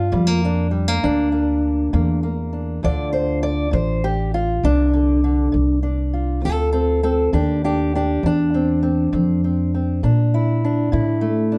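Smoky and soulful, this slow acoustic country blues moves in 12/8 with a straight feel. An old ladder-braced acoustic guitar carries the melody, fingerpicked with a boxy, woody tone from aged strings, and it plays throughout as the solo voice from 0.0 to 11.6 seconds. Beneath it, a pizzicato upright bass with steel strings supplies a growly, thumpy foundation, and both parts sit up front in the mix. The harmony drifts from Gm7 to Dm9 at 2.8 seconds and settles on Bbmaj7 near the close. A moderate studio reverb and a dark production give the duo an intimate, late-night character in this short cut from a longer piece.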